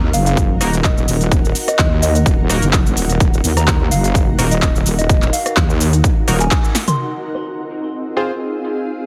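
Bass house with a swaggering, gritty mood, swung slightly on the sixteenths and cut from a longer piece. A heavy, saturated wobble bass sits up front from the start, detuned sawtooth and sine tones pumping against a punchy, tape-warm electronic kick that enters at 0.4 seconds. The big-room dance drum kit adds a punchy snare, crisp hats, handclaps, rim clicks, shaker and toms, its snare, hats, percussion, toms and room all filtered low-pass. Above, a nasal, band-passed chord stab with chorus and dub echo pumps alongside a cloudy, evolving granular pad, while a pure FM bell drifts in the background through phaser and echo. After a band accent at 6.5 seconds and a drum fill, the harmony moves from E-flat minor to F minor at 7.0 seconds, where the bass has dropped out and the pad carries on beneath the drums. The mix has a heavily compressed, radio-like sheen with light digital ambience.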